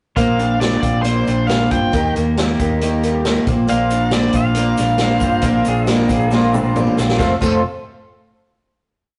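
Jangly and hopeful, this short folk rock and heartland rock piece moves at 136 BPM in a straight 4/4, with a shimmering, octave-doubled twelve-string acoustic strumming eighths in open shapes over Bbadd9 and Eb. A biting, overdriven lead guitar carries a motif-based melody, a slightly broken-up lo-fi electric guitar picks arpeggios, a round hollow-body bass stays locked to the kick drum, and a vintage kit with a punchy kick and a rolled-off top drives a rock groove. At 3.7 seconds a very quiet tonewheel organ with key click and slow rotary adds a sustained pad alongside a grainy egg shaker in the background, a clean pedal steel enters at 5.0 seconds with fingerpicked volume swells and slide licks, and a drum fill at 6.3 seconds leads into a final F chord, all heard in a rough rehearsal-room recording with tube saturation and moderate stone room reverb.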